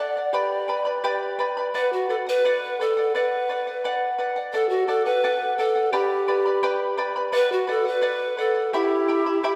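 A breathy, bright pan flute carries the melody up front, its soft attack and vibrato framed by a fingerpicked charango whose shimmering double strings sit close beside it in this festive, earthy Andean folk excerpt. At 8.7 seconds, a large quena joins on a second line, airy and tongued with a touch of chiff, sounding distant. The whole ensemble is heard from further back in a concert hall, with a wet reverb.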